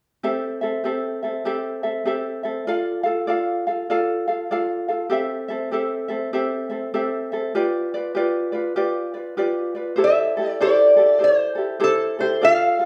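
Languid and relaxed, this Hawaiian piece at 98 BPM swings gently in C major as a light, fingerpicked acoustic ukulele plays up front from 0.2 seconds through C6, Dm, Am7 and G7, before a metallic, nasal lap resonator guitar, played with fingerpicks and slide, joins at 10.0 seconds with the melody, all set in a live-room band sound bathed in a large studio reverb.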